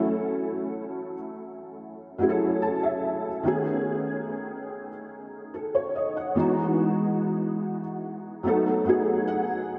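A soft, intimate felt-muted upright piano plays alone, up front, in this smooth, tender R&B fragment at 72 BPM, moving through F#m7, B13, Emaj9 and B7 with an ensemble chorus on its mellow tone and a brief fill from 2.2 to 3.4 seconds, all soaked in a lush hall reverb that gives the mix a dreamy glow.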